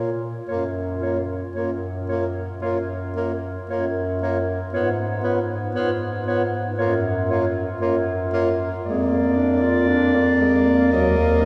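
Yearning and elegiac, this rubato classical passage for single-reed quartet, cut from a longer piece, sets a warm clarinet melody above a mellow alto saxophone second line sung with vibrato, a tenor saxophone accompaniment and an up-front bass clarinet carrying the bass, heard inside a long, wet cathedral reverb as the chords move from Gbmaj7 through Db7/Ab and Bb7/F to a final Ebm.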